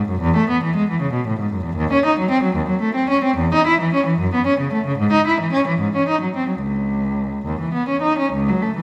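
A lilting 6/8 pulse sways at 66-78 BPM in dotted quarters, stretched and relaxed by a free rubato that gives this baroque-style suite movement a flowing, dance-like character. Set in C# minor, it is a classical piece for unaccompanied cello, heard here as a short fragment cut from a longer work. A single bowed cello carries everything from 0.0 to 8.8 seconds, ranging from a deep C#2 up to E4. Its tone is warm and expressive, shaped by a soft attack, singing vibrato and gentle portamento slides between notes. The player sits close and up front, while a lush concert hall reverb with a 2.1-second decay blooms around each phrase.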